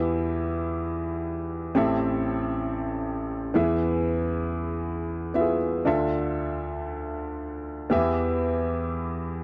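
Moody and urgent, this 9.4-second pop fragment in free time, cut from a longer piece and tuned to A4 = 444 Hz, features a solo grand piano spanning A1 to E5 that sounds clear, intimate and up front, with audible action noise, as it moves through Em, Am7, E and Dmadd9 before returning to Em in a dry, close 1970s-style studio sound touched by small room reverb.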